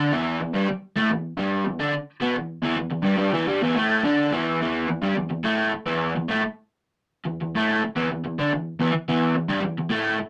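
A straight, steady 4/4 pulse drives this short rock excerpt, which has a swaggering, raw attitude. A single electric guitar plays alone from 0.0 to 10.2 seconds, picked and double-tracked, with a crunchy, overdriven tone sitting up front. It opens on an E minor chord, then from 4.6 seconds moves into a second passage where the playing leaves the harmony open. The guitar covers a low-to-middle range, adding heft and bite. The sound is a rough rehearsal-room capture, with warm saturation and a short, wet booth ambience that keeps everything close and gritty.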